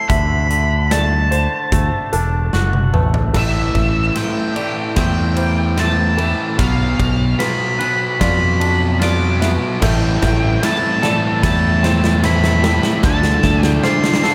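A dark, fuzzy octave-fuzz lead guitar carries the melody over mellow, muted upright-piano arpeggios and clean, twangy electric guitar arpeggios, each washed in tape echo, as a direct, up-front fingered bass and a punchy, big-room rock kit join; a drum fill at 2.5 seconds ushers in a compressed, distorted guitar riff at 3.3 seconds and a very quiet, thick fuzz guitar riff at 9.8 seconds, building a brooding, cathartic post-rock passage cut from a longer piece.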